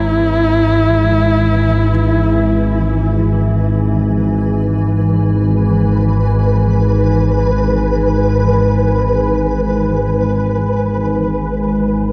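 A husky, bowed horsehead fiddle opens this dark, ominous ambient drone excerpt in free time, its focused, up-front line carrying vibrato and portamento through tape echo until 3.8 seconds. Beneath it, a mellow analog drone of detuned sawtooth and pulse waves sits up front with chorus, while a cloudy granular pad fades in with blurred, evolving sustained chords. From 5.0 seconds a flickering, grainy texture joins with its own built-in reverb, and the mix is steeped in a wet, huge ambient reverb with a 9.5-second tail.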